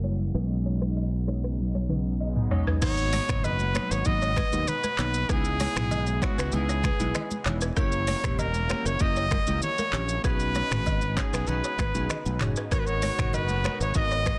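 A breathy, whispered trumpet with light vibrato and delay carries the melody from 2.8 s, floating over a hypnotic, mellow afrobeats groove built on a punchy, up-front fingered electric bass and an electronic afro-pop drum kit with deep kick, metallic hi-hats, finger snaps, handclaps, shaker, toms and a softly clipped snare, which enters at 0.8 s and builds through a drum fill. Glassy digital keys with chorus and a filter sweep and a woody, buzzing balafon riff with delay sit behind, while a lush, detuned sawtooth pad pumps under sidechain and close, dry congas join at 3.1 s. A clear horn section slips in at 12.7 s, all within a small room and a dense, heavily limited modern master of this cut from a longer piece.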